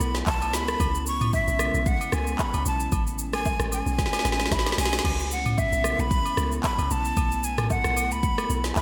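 A breathy, bright jazz flute with vibrato and a crisp, chiffy attack carries the melody up front, trailed by delay, in this deep, soulful amapiano excerpt in C# minor at 113 BPM with a swung sixteenth feel. Beneath it, a round, dark log drum bass and an airy pad with chorus and sidechain pumping move through C#m7, Amaj9 and B7sus4, while an electronic afro-pop kit with a deep kick, woody snare and metallic hats sits forward under gated reverb, breaking into a drum fill at 4.0 seconds. Close, dry woodblock and agogo bells join in the background from 0.3 seconds, all within a bright 1980s-style digital production.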